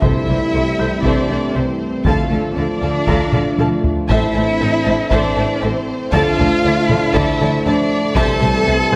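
A lone, expressive cello sings the melody up front with vibrato and portamento, alongside a lush violin section on a second melody line over shadowy background violins, violas, a chorused pulse-width pad with a shimmering retro glow, and very quiet French horns and trombones holding sustained chords. This cinematic hybrid orchestral and electronic score excerpt moves at 118 BPM in D minor with a futuristic, tense mood, as a harp-like synth pluck rings out arpeggios, rich cello and double bass sections carry the bass, a faint concert grand piano adds high texture, and heavy-stick taiko drums drive the pulse with a fill at 3.3 seconds. The whole ensemble sits in a wet scoring stage reverb as the harmony cycles from C6 through Dm and Am.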